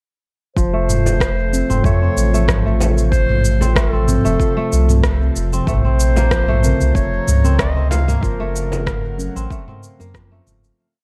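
Meditative and mystical, this short organic downtempo piece settles into a gently swung groove from 0.6 seconds, with a solo clarinet carrying a classical-style melody built from short call phrases, washed in dub echo and shimmer reverb. Beneath it, a fingerpicked kora rings out a crisp, mellow twelve-step loop that drifts against the bar, filtered and trailed by tape echo, while a smooth, detuned analog pad holds sustained chords in the background, breathing with chorus and sidechain pumping. A round, sine-like sub bass sits up front with long gliding notes, and a deep, soft electronic kick anchors the beat alongside a tape-toned electronic kit of shaker, low tom and rim click that sounds re-recorded in a large room. A saturated frame drum murmurs in the background from 1.1 to 8.8 seconds, and muted, felt-like synth keys add sparse, dark, echoing chord stabs from 1.5 seconds. The chords move from F to B-flat minor with an added ninth and then to G-flat, and the whole piece fades out from 7.4 seconds to its close in an echo-heavy haze.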